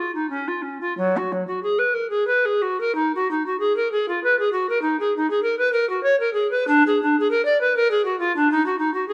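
Solemn and grave, this short fragment of a baroque-style fantasia for unaccompanied bass recorder unfolds in Eb minor at a flexible 84-102 BPM in 3/4, its pulse bending freely with rubato. The bass recorder carries the whole 9.1 seconds alone, ranging from F#3 up to D5 with a woody, airy tone. Tongued notes begin with a chiff, and vibrato gives the expressive line its breath. The instrument sits up front, yet a touch of distance lingers in its sound as a moderate recital-hall reverb lends the space a dignified glow. The phrase opens with a brief statement over the first 3.0 seconds and then returns for the remainder, deepening the music's sober, contemplative character.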